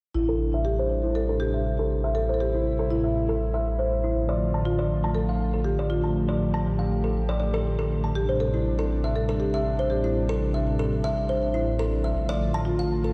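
Heard through a big sound system in a bare room, this driving, warm house passage sits in a lush hall reverb with a swung feel. A dark, rumbling detuned saw bass sits up front while a smooth analog pad with chorus sustains Am7 and Dm/A chords, and a mellow, round marimba with soft mallets carries the melody through tape echo. From 0.3 s a woody, airy kalimba adds plucked arpeggios, with tape echo and a low-pass filter sweep running through the whole passage.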